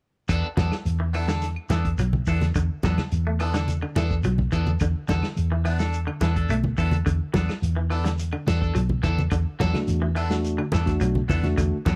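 A dark, round hollow-body bass sits up front in this funky, driving afrobeat excerpt, holding down an E7sus4 chord beneath a twangy, scooped electric guitar playing phased arpeggios and a second, slightly broken-up guitar adding bright stabs through its own phaser. A muffled, lo-fi vintage drum kit with a tight kick and rolled-off top drives the groove, while low-tuned congas, a grainy shekere and woody claves sit in the background. At 9.7 seconds a bell-like tine electric piano steps forward with clean accompaniment, and the whole excerpt carries a dry, close 1970s-style small-room sound.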